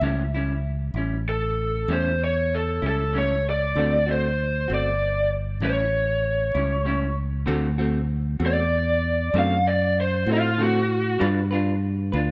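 An overdriven, lo-fi lead guitar through a small cranked amp sits up front in this laid-back, rollicking 12/8 blues excerpt, entering at 1.3 s and taking a solo from 7.5 s over a bright, twangy, slightly broken-up accompanying guitar with tremolo and a direct, warm fingered electric bass, heard in a rough home demo mix with light digital reverb.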